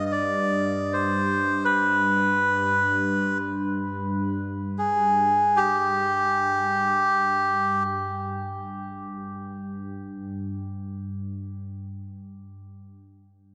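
A reedy, breathy melodica sings a haunting meditative world melody up front until 7.8 seconds, floating over a deep, moody pad of detuned sawtooth voices with chorus that drones on alone until 12.0 seconds, all set in a vast, echoing cathedral space that makes this short cut from a longer piece feel spacious.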